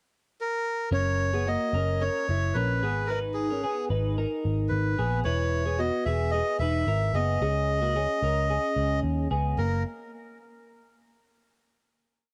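Jangly indie pop at 111 BPM in F# mixolydian: a short, complete piece with a nostalgic, youthful mood and the intimate sound of a small room captured on cassette at home. A reedy, nasal melodica with analog delay opens at 0.4 s with a motif-based melody, joined at 0.9 s by a bright, twangy twelve-string electric guitar ringing out picked arpeggios doubled in sixths, with subtle chorus and cassette tape colour. Alongside it, a dark, foam-muted vintage electric bass plays a punchy, melodic line with slides, as the verse moves through F#, G#m, Eadd9 and C#sus2 before arriving on a final F# chord at 9.6 s.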